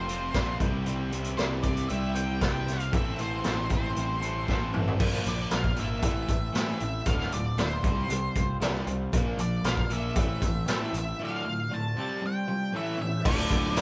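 A dark, fuzz-soaked lead guitar carries the melody from the opening moment of this gritty, swaggering classic rock excerpt, set at 116 BPM in a straight 4/4 and played like a band together in one room with light reverb. Beneath it, a raw garage drum kit sits up front with a boomy kick, a medium-tuned snare and a saturated, rolled-off top, while a punchy fuzz bass, both direct and amped, anchors the low end. Two background riff guitars, one bright and overdriven and one sludgy, grind alongside a boxy, freshly strung acoustic guitar picked with a swing feel. The harmony moves from F through C and Am before shifting at 5.0 seconds, just after a drum fill, into a passage cycling through Bb, Am, Dm and Csus4, landing on A and then Dm. In the closing moments a very quiet tonewheel organ with slow rotary chorus vibrato enters at 13.0 seconds, and at 13.3 seconds a compressed, double-tracked overdriven guitar riff enters together with a faint, grainy tube shaker.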